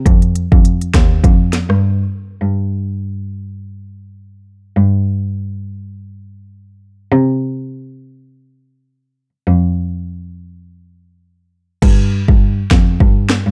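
A dry, dark mix sets a sultry, tough dancehall groove at 102 BPM, with a light swing on the sixteenths. An up-front electronic drum kit, with a deep kick, sharp snare and rim clicks, smooth hi-hats and a crash, plays until 1.8 seconds and then breaks off. A single bowed cello, rich and focused with vibrato, carries the low bass line alone until the drums return at 11.8 seconds for the closing stretch of this short cut from a longer piece.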